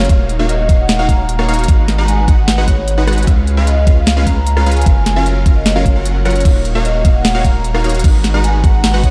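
Emotional and lush, this future bass excerpt moves at 151 BPM in a half-time feel in Eb minor, cycling through Ebm9, Abm7, Db7 and Gbmaj7 across its 9.1 seconds. A vibraphone played with soft mallets carries the melody between Db5 and Bb5, its metallic, ringing tone shaded by a fast motor vibrato and bathed in sidechain pumping and diffuse ambient delay. A bright, detuned supersaw stab drives the riff with a punchy attack and a filter sweep, also pumping and echoing, while a very quiet unison pluck adds wave-folded, noisy arpeggios high in the register. Underneath, a thick, saturated sub bass sits up front with the same pumping motion, and an overdriven electronic kick enters at 0.1 seconds with a knocking punch. A trap kit with a sharp snare, crisp hats, rim clicks and crash cymbal rounds out the groove, and the whole mix is soaked in a lush hall reverb that gives it a dreamy glow.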